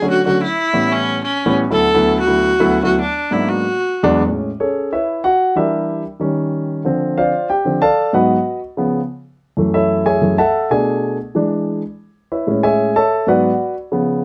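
A lively, danceable jazz excerpt at 187 BPM in 4/4 with a straight feel, cut from a longer piece and set in a moderate club reverb. A bright, nasal viola carries the melody up front with light vibrato and an airy bow until 4.1 s, over a grand piano with short sustain that then takes a solo from 4.3 s through 14.2 s. The harmony settles into A major, moving through chords such as Amaj9, F#m9 and E7.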